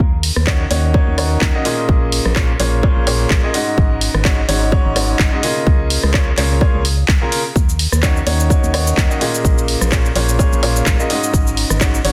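Opening on a hollow, dark, organ-like FM bass with sidechain pumping and a layered, punchy electronic kick, this soulful, bittersweet piano house excerpt brings in a tape-warm analog drum machine with cabasa, handclaps, hi-hat and rim click at 0.2 seconds, then a clear, woody upright piano riff at 0.5 seconds that sits up front with tape echo and its own sidechain pumping, cycling through minor-seventh, suspended and sixth chords under light digital reverb in a dense, heavily limited master.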